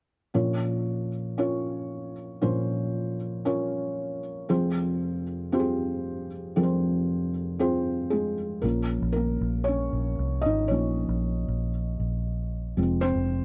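This bittersweet, earnest pop excerpt moves at 116 BPM in a straight 4/4, opening at 0.3 seconds with a felt-muted upright piano whose thick felt, mellow tone, short sustain and audible action noise sit up front and intimate over Bbm and Fm chords. At 8.6 seconds the piano takes a solo as a vintage muted fingered electric bass enters, round, punchy and foam-muted in its low register. The close, dry 1970s-style studio sound carries only a light reverb.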